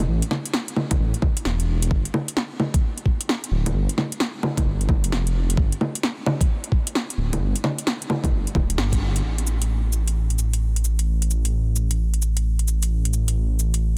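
A swung sixteenth-note groove in four drives this rainy, ghostly future garage fragment, cut from a longer piece. The garage drum kit runs almost the whole way through, its bongos, cabasa, metallic hi-hats and cracking snare sounding layered, produced and tape-warm up front. An electronic kick drum joins at 0.9 seconds with a knocking, layered punch and drops out at 9.0 seconds, just after a full-band accent at 8.8 seconds and shortly before the closing section begins at 9.2 seconds. Underneath, a dark detuned saw bass rumbles low and deep, its unison sawtooth voices beating over a sine layer, with a fast attack and sustained notes, pumped by sidechain compression. Light reverb hangs around the parts, and the dense, heavily limited modern master keeps the sound thick and close.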